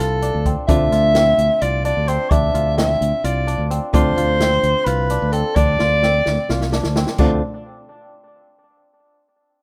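This brooding progressive instrumental opens on a Dm7 chord, with a breathy soprano saxophone carrying a whispered, intimate jazz melody marked by vibrato over clean hollow-body guitar accompaniment, fingerpicked kora arpeggios and fingered electric bass. An acoustic jazz drum kit joins at 0.2 seconds in a small room, its dark cymbals, medium-tuned snare and boomy kick driving the tense, uneven 7/8 feel. The kora rings crisp and bright through an analog delay, while the bass sits warm and up front in the low register. A drum fill starts at 5.8 seconds, and the saxophone drops out at 6.7 seconds as the band carries on. The whole cut from a longer piece has the rough quality of a home demo mix with studio reverb.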